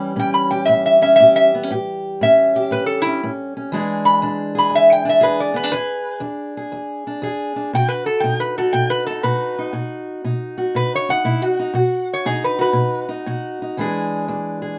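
A relaxed 4/4 swing at 119 BPM, with swung eighth notes lilting along, drives this short acoustic country blues excerpt, cut from a longer piece and played by a duo. A fingerpicked steel-string parlour guitar carries the accompaniment from the very start until 14.8 seconds, its old strings giving a dark, woody, boxy tone across a low-to-middle range. Just after it, at 0.2 seconds, a metal-body resonator slide guitar enters with the melody, played with fingerpicks and sounding metallic and nasal as it sings in a higher register until 13.1 seconds. Both guitars sit up front, with the resonator noticeably louder than its partner. The harmony moves from A7 to E7, then to B, and returns to E7 near the close, giving a laid-back, soulful mood in a booth with moderate ambience.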